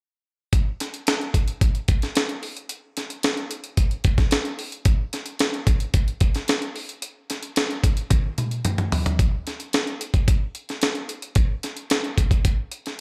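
A breakbeat sampler-style drum kit opens this glossy, urban pop excerpt at 0.5 seconds, laying down a straight 4/4 groove at 111 BPM with hi-hat, a thumpy kick, a high-tuned snare and toms. The compressed, gritty kit sits up front with gated reverb in an otherwise dry space. A drum fill arrives at 8.1 seconds and leads into a new section at 9.2 seconds.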